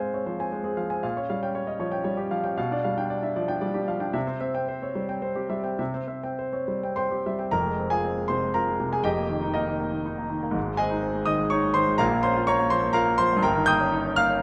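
Closely recorded with light reverb, this short passage cut from a longer romantic character piece features a polished, up-front concert grand piano with deep bass, playing solo across a span from F1 to G6 in a passionate F minor 3/4 at a flexible, rubato 101-128 BPM, moving from a cadence on C toward a new section at 7.5 seconds that turns through Ab and Bbm.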